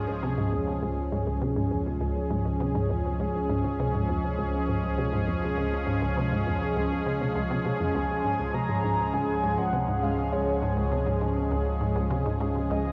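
A sweeping, airy pad in sustained chords fills this cosmic, expansive piece of ambient space music, its detuned sawtooth tone sitting bright and up front with a chorus sheen and a noise layer. Beneath it, a juicy, squelchy blip pluck repeats a sequenced riff from the start, its resonant filter snapping open on each note before decaying through chorus and analog delay. A round sine sub bass holds a deep Db throughout, anchoring the straight 4/4 pulse at 101 BPM in Db major on a single Db chord. At 8.0 seconds a soft, flute-like synth lead enters with a breathy melody, adding vibrato, analog chorus, shimmer reverb and analog delay. The whole passage sits in a wet concert-hall reverb, and the sound carries the worn, warbling pitch drift of old cassette tape, as if this 12.9-second fragment were lifted from a longer track.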